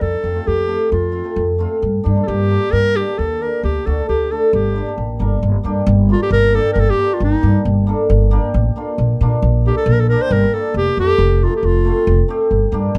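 A mellow, soft-attack clarinet sings a soulful, classical-style solo melody up front from the first moment over a shimmering, ringing hammered cimbalom accompaniment and a woody pizzicato upright bass, all in a festive klezmer excerpt in G minor at 135 BPM that keeps speeding up, with a dark production and light reverb, as the clarinet drops out at 12.3 seconds and the bass carries on until 13.0 seconds.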